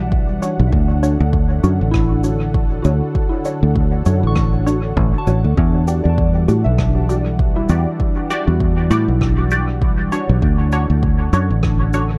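Ambient dub at 99 BPM with a swung sixteenth feel, this spacious, meditative excerpt from a longer piece moves between Em9 and Dmaj7, with a smooth, detuned sawtooth pad holding chorused chords, a pure FM bell tracing arpeggios through chorus, phaser and tape echo, a foam-muted fingered electric bass sitting punchy and up front, an overdriven, layered electronic kick, filtered square-wave dub chord stabs with a sub octave and filter sweep thrown into phaser, analog chorus and dub echo, and a cabasa and rim click with a rolled-off top trailing dub echo, all set in dark studio reverb.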